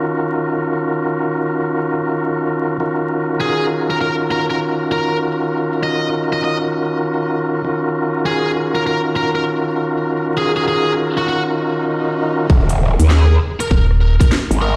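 A clean tonewheel organ with key click and fast rotary speaker opens this gritty, playful glitch hop excerpt in Eb minor at 99 BPM, playing pumping stabs on an Ebm9 chord with a swung 16th-note feel. A biting, overdriven lead guitar carries the melody from 3.4 seconds, both parts trailed by delay, while a background electronic swell rises toward the drop. At 12.5 seconds an impact lands and the harmony shifts to Eb5 as a growling, wobbling, formant-filtered bass with chorus hits alongside a tight, tape-warm kick. A drum-and-bass kit adds a cracking snare, crisp hats and rim clicks, and a rubbery, hollow square bass briefly bounces in, all heard through a stone room with vinyl crackle.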